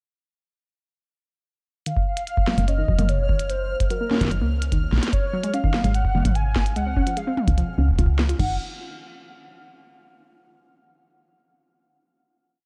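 A broken, tape-warm kick pattern and a glitchy electronic kit of clicky closed hats, a tiny snare, low tom and crash playing an ever-changing beat drive this short IDM piece at 147 BPM in straight 4/4. The mood is glitchy and wistful, set in Gb lydian. From 1.9 seconds a warbling, detuned lead of triangle and sawtooth carries nostalgic arch-shaped motifs, coloured by vibrato, tremolo, chorus and delay. Beneath it a lo-fi, dusty sawtooth pluck with a noise layer and filter sweep runs a mellow 14-step arpeggio loop that drifts against the bar, also treated with chorus and delay. A woody, round FM bass plays a dub-style line up front, while a bright, resonant texture bubbles in the background on a held high note, its filter stepping randomly, with chorus and its own reverb. In a dark digital ambience the chords move from Gb through Ab7sus4 and Db before the piece settles on a final Ebm/Gb chord at 8.4 seconds.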